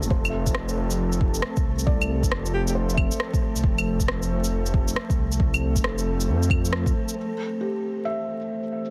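A menacing, detuned saw bass sits up front in this rainy, nocturnal future garage excerpt at 136 BPM with a 16th-note swing, its saturated tone pumping under the sidechain alongside a deep, tape-warm electronic kick until both drop out at 6.9 s. A warbling, nostalgic pad and a felt-muted upright piano with audible action noise and dub echo carry chords from F to Am, while electronic shaker, claves and rim click, re-recorded in a large room, tick above an airy, wind-like noise layer in the background. A clear alto saxophone with vibrato and tape echo sounds a single brief note at 2.5 s, all in a dense, heavily limited master dusted with vinyl crackle.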